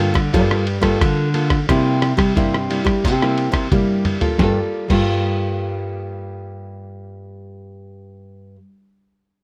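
Samba and choro in a lively, nostalgic mood, this short cut from a longer piece pairs two up-front, fingerpicked nylon-string guitars: one plays classical-style accompaniment with a woody, old-strings character, while the other carries the bass line as the harmony moves between Gm9 and C7. A muffled, compressed, sampler-style drum kit with a thumpy kick, fat snare and tape-tinged colour plays a fill from 3.7 to 4.4 seconds and drops out at 5.1 seconds, leaving the guitars to continue in light reverb.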